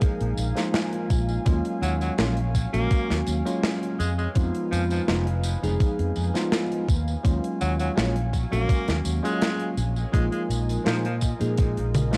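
A thumpy, sampler-style electronic kick sits up front in a straight 4/4 groove, joined by an acoustic kit of hi-hat, snare, tambourine and toms that sounds airy and polished in a big room, with a drum fill at 11.9 seconds. This melancholic, woozy vaporwave piece moves through Bb7sus4, Ebm11 and Fm7b5 chords, carried by a bell-like electric piano with a touch of chorus and vintage 12-bit sampler grit, while a warbling, detuned pad with slow attack, chorus and its own reverb drifts beneath at a low level. A round, up-front fretless electric bass with analog chorus enters at 0.2 seconds. From 1.8 to 11.2 seconds an edgy, forceful tenor saxophone carries the melody in a low register, with vibrato and tape echo. The recording is dry and gritty with a cassette-tape character and light reverb, and it is cut from a longer piece.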